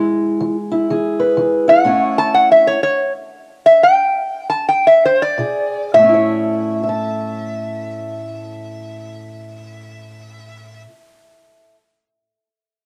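Acoustic country blues with a gritty, swaggering mood, moving at 108-124 BPM in 4/4 with a swung eighth-note feel in A major, cut from a longer piece. A lap resonator guitar carries the melody up front, its slide tone metallic and nasal, played with fingerpicks and colored by cassette tape and plate reverb; it plays from 0.0 to 10.8 seconds. Beneath it, a fingerpicked steel-string acoustic guitar supplies accompaniment with a dark, woody, boxy parlour sound from old strings, also up front with plate reverb, and it rings on until 11.8 seconds. The tempo slows between 1.8 and 5.9 seconds as the harmony moves from E to A, with a Bb7 arriving just before the second section returns to A. The home cassette recording sits in a moderate studio-style reverb, giving the duo a lo-fi character.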